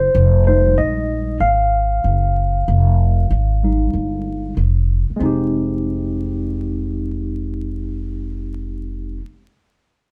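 A worn, barky tine electric piano, slightly out of tune and up front, takes a solo over a woody, thumpy pizzicato upright bass for the first 5.2 seconds of this cool, smoky swung hip hop piece, cut from a longer recording and resting on a minor seventh chord, with the duo playing live in one room under moderate studio reverb and vinyl crackle.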